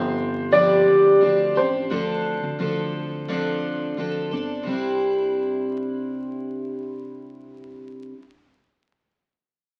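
A straight 4/4 pulse at 87 BPM carries this easy-going, carefree pop fragment in C major, where a clear, slightly detuned upright piano sings a brief, up-front melody until 3.9 s over a shimmering, octave-doubled picked twelve-string acoustic guitar and a quieter, dark, thumpy pizzicato upright bass on gut strings, the harmony shifting from G7sus4 to Cadd9 at 4.7 s inside moderate studio reverb and the crackle of a very old 78 rpm record.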